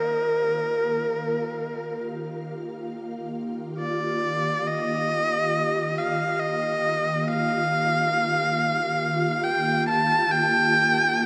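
Drenched in a huge, long-tailed reverb, this luminous, weightless ambient piece in free time and Eb major, cut from a longer work, opens on an Ebadd9 chord as an ethereal, airy pad with ensemble chorus and phaser fades in beneath a warm, focused electric violin whose bowed melody, colored by vibrato, portamento and delay, floats up front for the full 11.3 seconds.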